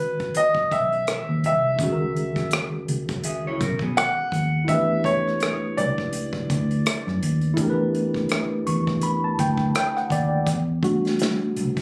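A clear, intimate baby grand piano with audible action noise carries the melody over a worn, slightly out-of-tune tine electric piano with light overdrive, a round, foam-muted fingered electric bass and an unplugged drum kit played with bundle sticks in this introspective, smooth neo-soul R&B cut at 83 BPM with a swung sixteenth feel, moving from C#m11 to Em11 as a dark, picked hollow-body jazz guitar slips in briefly at 3.2 seconds, the electric piano takes a fill and then a short solo from 10.5 seconds, and the phone-in-the-room capture adds club reverb and compression.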